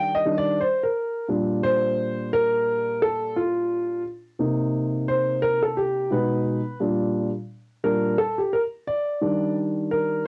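Swung sixteenths at 87 BPM in 4/4 set an unhurried hip hop pulse for this warm, smooth excerpt in Bb major, carried entirely by a dark grand piano playing solo from 0.0 to 10.2 seconds. The mellow piano sits up front with long sustain and a cassette tape colour, spanning Bb2 to G5 as it moves through lush chords such as Ebmaj7, Bb69 and Cm7 before returning to Ebmaj7 at 9.2 seconds. Light reverb and the home cassette recording give the sound an intimate, lived-in character.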